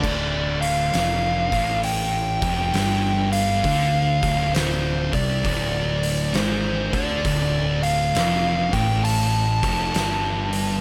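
A slow, swung 4/4 groove at 66 BPM drives this ominous, brooding stoner and doom metal passage in D minor, which holds on a single Dm chord for its 10.8 seconds, cut from a longer piece. A pair of dark, picked fuzz guitars grind out a low riff in the background beneath a growly, bright overdriven bass, while an oversized low-tuned drum kit plays with a punchy kick, fat snare, hi-hat and crash cymbals in a saturated, gritty, pumping stone room. Up front, a warm distorted fuzz lead guitar carries the melody through a digital delay, and the overall mix stays fairly dry.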